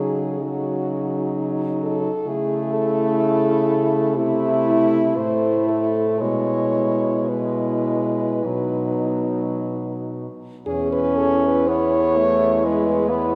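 Classical music for horn quartet, this short excerpt is tender and lyrical, unfolding in a flexible, rubato 4/4. The lead horn carries the melody with a mellow tone and vibrato, miked close. A second horn sits in the background on a softer inner line with light vibrato. A third horn, warm and distant yet placed up front, supplies the accompaniment, while the bass horn anchors the group with a soft attack, light vibrato and a roomy, far-off sound. The four horns play together throughout, moving through shifting harmonies from D#m/C# to a B chord before a second section opens on E at 10.7 seconds. A long, wet cathedral reverb surrounds the ensemble and gives the piece a spacious glow.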